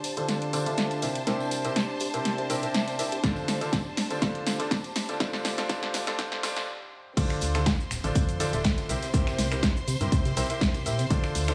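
Piano house at 122 BPM in D minor, soulful and energetic, with a light swing on the sixteenths, cut from a longer piece. A bright, brilliant baby grand piano sits up front playing the riff, its audible action noise and long sustain treated with digital delay and a filter sweep, while a lush, bowed violin section holds close, vibrato-rich chords and an airy, breathy pad with chorus hangs in the background until 6.7 seconds. A hollow, organ-like FM bass with a dark, percussive attack pumps beneath, and a punchy, dry analog drum machine supplies crash, finger snaps, hi-hat, shaker and snare, joined by a tambourine in the background. The build-up runs through a drum fill and a filter sweep over Dm7, C7 and Bbmaj7, with a layered electronic kick entering at 3.2 seconds. After a brief stop, the drop lands at 7.2 seconds, where a distant, roomy big-band kit with a high-tuned snare adds a very quiet swinging hi-hat and snare under the pumping groove, all in a light, small-room ambience.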